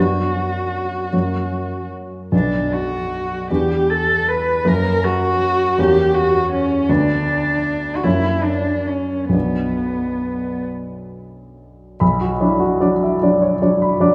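In a slow, rubato 6/8 lilt of about 42-54 BPM counted in dotted quarters, this romantic classical duo for cello and grand piano unfolds in B minor with a solemn, melancholic air. A single bowed cello carries the melody from B3 to B4, its dark, woody tone shaded with vibrato and sitting up front yet with a distant quality. A warm baby grand piano supplies the accompaniment across a broad span from B1 to B5, moving through harmonies such as Bm, F#, E5 and Edim7 before settling back on Bm. The cello falls silent at 10.6 seconds, leaving the piano alone until the passage closes at 14.1 seconds, with a new section beginning at 12.0 seconds. A wet recital-hall reverb places the listener further back in the room, and the clip is cut from a longer piece.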